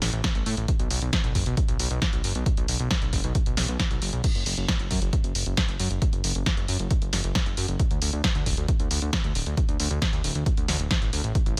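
Bittersweet yet euphoric, this excerpt of uplifting trance drives forward at 135 BPM in a straight 4/4, cut from a longer piece. A fat, thick analog bass built from detuned sawtooth tones sits up front, ranging from D1 to A2 with a fast attack, decaying notes, a filter sweep, tube saturation and sidechain pumping. A punchy analog drum machine supplies crash cymbal, hi-hat and snare, its snare placed up front and re-recorded in a small room, playing from the start to 11.6 seconds. A separate punchy electronic kick drum, also re-recorded in a small room, enters at 0.2 seconds and carries through to 11.4 seconds. The mix is dry, with little reverb, and the tuning sits at A4 = 442 Hz.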